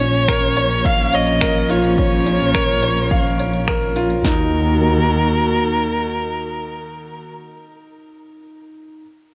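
Piano and strings electronica in Eb minor at 106 BPM, intimate and hypnotic, cut from a longer piece and opening on a drop where a punchy deep house kit of kick, snare, finger snaps and smooth hi-hat plays until about 4.4 s. Up front, an expressive solo violin with vibrato and portamento carries the melody through a delay over soft, sul tasto string chords in the background, while a woody upright piano riff with long sustain and delay rings on to 9.0 s. Beneath them, a dark, distant bowed double bass section pumps with sidechain, set in light studio reverb as the harmony moves from Bbm to Ebm at 4.2 s.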